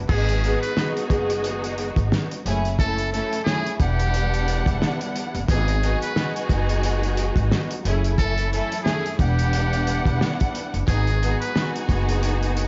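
Vinyl crackle and studio reverb wrap this dark, top-trimmed boom-bap hip-hop excerpt, which moves at a moody, reflective 89 BPM in G# phrygian with swung 16ths, cycling through G#m7, F#m7 and Em7. A cloth-damped, muffled, gritty drum kit with a fat snare and tight kick sits up front beside a woody pizzicato upright bass. A lush, bowed symphonic string section with portamento and cassette-tape coloring adds up-front accompaniment, while smooth studio strings hold sustained chords in the background, and a buzzy, breathy muted trumpet with scooped notes carries the jazz-style melody until 11.7 seconds.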